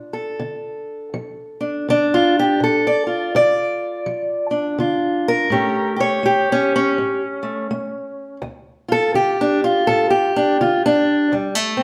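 This acoustic country blues excerpt in D minor has a smoky, soulful mood, moving at 82 BPM in 4/4 with a swung eighth-note feel. A fingerpicked steel-string parlour guitar plays alone from 0.0 to 11.8 seconds, ranging from D2 to D5 with a boxy tone, audible finger squeak and an up-front presence. The chords move from Bbmaj7 to A7 at 5.5 seconds, then to Dm, and settle on D5, all framed by a wet studio reverb that gives a sense of listening from further back in the room.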